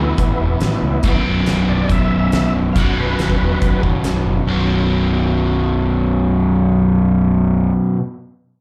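An overdriven tonewheel organ takes a gritty solo with chorus vibrato, fast rotary speaker and slapback echo over a biting, double-tracked guitar riff, fuzz-driven fingered bass and a huge arena kit with a fat snare and punchy kick, all at a swaggering, driving 140 BPM in this classic rock fragment heard live through a club PA, where the drums stop at 4.1 seconds, leaving guitar and bass to push on until about 8 seconds.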